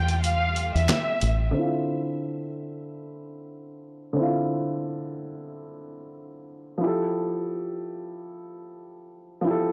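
Boom-bap hip-hop at 91 BPM in D minor with a gritty, dark mood, where a dark violin section with vibrato and portamento carries the melody over a woody upright piano, lush background strings, a round, punchy fingered bass, a compressed, pitched-down sampler drum kit of hi-hat and snare, and a very quiet finger snap, before everything but the piano stops at 1.5 seconds and a filter sweep on the piano runs through the dry, small-room remainder from Dm9 back to Fmaj9.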